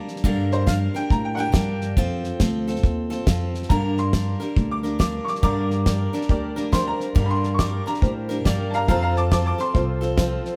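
A brilliant, slightly detuned upright piano takes the solo in this brooding, heartbroken stretch of swung honky-tonk country, carried by picked steel-string acoustic guitar, a woody, thumpy pizzicato upright bass and a dry, damped 70s drum kit with a fat snare and tight kick sitting up front, while a jangly, vintage honky-tonk upright piano joins at 5.4 seconds, all set in light reverb as if heard from further back in the room.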